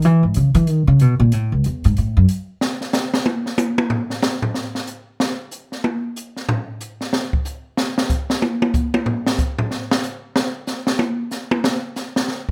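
Light reverb gives this studio-room recording a close, present sound, with both parts placed up front. It is a short cut from a longer modal jazz piece in F# dorian, swinging in 4/4 at 186 BPM, with a spiritual, hypnotic mood and tuning set to A4 = 441 Hz. The pizzicato upright bass opens with a brief solo over the drums, its woody steel-string tone ranging from C#2 to E3 before it stops at 2.2 seconds. The open jazz drum kit plays throughout and takes a solo from 2.6 seconds to the end at 12.5 seconds, moving across hi-hat, snare, toms and kick. A high-tuned snare and a boomy kick stand out in the acoustic kit sound.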